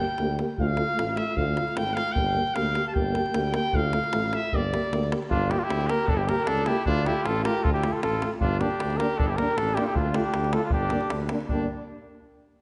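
A straight 2/4 pulse from a tight, dry davul drives this restless, fiery Balkan brass band passage, which keeps speeding up as a clear, vibrato-laden trumpet takes the solo over mellow French horn, euphonium and tuba bathed in a lush scoring-stage reverb, until a punchy flugelhorn steps up front with the melody at 5.3 seconds.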